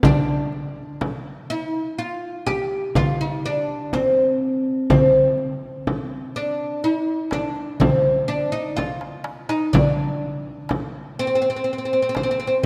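Heard in a reverberant concert hall with a long, lingering tail, this festive, passionate Arabic maqam ensemble piece is cut from a longer performance. It moves at 124 BPM counted in eighths, in a straight 10/8 metre. Up front, a fretless, plectrum-plucked oud carries the melody between C4 and G4, its double strings giving a warm, woody tone. Beneath it, a small metal-shell darbuka adds crisp, high strikes, while a large frame drum sits forward with a deep thud, both heard close and dry. A drum fill from 8.8 to 9.7 seconds leads into a new section that runs to the end at 12.7 seconds.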